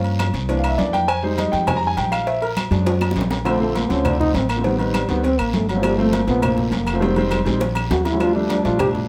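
A dark, forceful trombone with light vibrato and a smooth top takes the solo from 3.6 seconds, carrying this sunny, danceable Afro-Cuban jazz fragment at a brisk 202 BPM in 4/4, settling in Bb major. Before that, an intimate grand piano, natural and up front with audible action noise, takes the opening solo, while a woody, thumpy pizzicato upright bass on gut strings holds down the low end. Beneath them, ringing metal-shell agogo bells and timbales, medium-tuned congas, round low-tuned cowbell and bongos, woody claves and a raspy, close guiro drive the groove in a moderate studio reverb, with drum fills arriving around 2.9 and 7.6 seconds.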